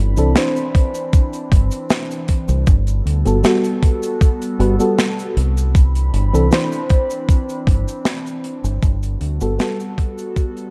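A steady, straight 4/4 groove sits on an airy acoustic kit of snare, hi-hat and cabasa recorded in a small room, joined at 0.7 seconds by a thumpy, sampler-style electronic kick. This dreamy, nostalgic vaporwave fragment, cut from a longer piece, drifts between Cmaj9 and Gmaj9 chords. Underneath, a deep dub fingered electric bass sits up front with a round, punchy tone and stops at 9.6 seconds. A mellow FM electric piano plays soft, full-bodied accompaniment with subtle chorus and tape echo. Behind it, a warbling, detuned tape-like pad holds slow-attack chords, coloured by chorus, phaser and 12-bit sampler grit. The production is dark with light reverb, and the music fades out from 6.8 seconds to the end.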